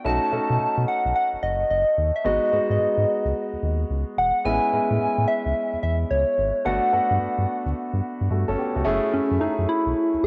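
Steeped in a wet spring reverb and the worn character of a home cassette recording, this confident, bouncy new jack swing excerpt rides a swung sixteenth-note feel, with a deep analog bass anchoring the low end, an intimate concert grand piano with audible action noise in accompaniment, and a gentle, warbling FM synth lead carrying the melody through chorus and tremolo before the harmony settles on F#m9 at 8.9 seconds.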